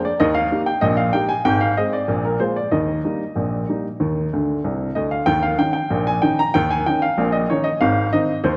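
Jaunty and cheerful, this short ragtime piece for solo upright piano moves in a straight two-beat metre. The piano sounds warm, woody and polished, sitting up front in the mix with a present tone that spans from deep bass notes to bright treble. Its harmony opens on the home chord of E-flat major and circles back to it. A short piano fill at 4.3 s leads into a new section at 5.3 s, which runs until the clip ends at 8.6 s. A moderate concert-hall reverb adds a sense of space around the piano, and the clip is cut from a longer performance.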